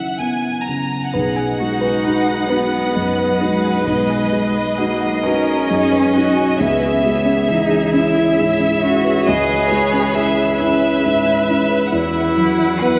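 Neoclassical piano and strings in B major, this intimate, tender passage moves in a slow, rubato 6/8 at 44 BPM and is cut from a longer piece. A felt-muted upright piano sits up front with a soft, dark, vintage tone and audible action noise, accompanying a rich chamber violin section that carries the melody with focused vibrato. At 1.1 seconds a clear solo viola, a very quiet sustained string section and a round, tine-like synth pluck join in. The pluck plays arpeggios in the background, coloured by chorus and phaser, and a distant solo cello adds a second line from 1.6 seconds. The harmony drifts from F#7sus4 through B6 and C#m7 to Esus2, all bathed in the long, wet reverb of a church.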